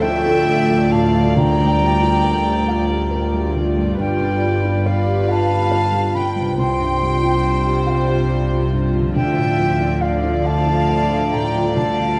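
Longing and moving, this brief excerpt from a cinematic, emotional film score unfolds in a rubato 6/8 for full orchestra. A violin section carries the melody with a soft, floating, sul tasto sound, while a second violin section adds a rich, intimate line with light vibrato, and a concert flute above them contributes a pure, straight-toned second line with a crisp attack. Beneath, a felt-muted upright piano sits in the background with thick felt and audible action noise, joined by a sul tasto viola section in accompaniment, a mellow French horn section holding sustained chords, and a very quiet concert harp ringing out fingerpicked arpeggios. The low end comes from a dark double bass section and a soft-attacked cello section, both bowed and floating. The harmony moves from Dm through Bb6/D, G7 and Csus4 before settling back on Dm at 9.2 seconds, and the whole ensemble sits in a moderate scoring-stage reverb with a dark production.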